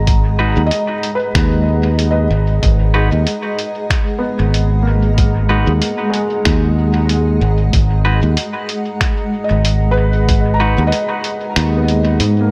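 Deep and hazy, this ambient dub excerpt moves at 94 BPM in G# minor with a lightly swung 4/4 feel, resting on a G#m7 chord in a lightly reverberant room. A blurred, detuned granular cloud pad holds slow-blooming sustained chords while a felt-muted upright piano, intimate with audible action noise, plays arpeggios through tape echo, and an up-front fingered electric bass anchors the low end. An overdriven soft electronic kick runs from 0.1 to 10.4 s beside a muffled, pitched-down sampler-style kit of finger snaps and hi-hat in dub echo, while a bright, clean semi-hollow guitar adds compressed stabs with dub echo of its own.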